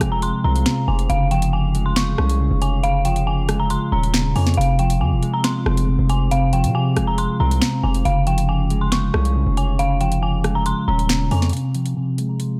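Ominous and dark, this excerpt of half-time drill hip hop at 138 BPM in F minor moves between Fm and Db/F as an eerie, inharmonic synth bell carries the melody high up, its chorus and tape echo blurring each decaying note, while a clean, compressed electric guitar with lush chorus plays accompaniment and a warbling, lo-fi pad hangs nostalgic chords in the background. A punchy, heavy 808-style bass sits up front with a fast attack and a noise layer until 11.5 s, and the electronic drill kit adds a sharp snare, metallic hi-hats, rim clicks and finger snaps. A filter sweep closes the final second, all set in light digital ambience with a dark, warm mix.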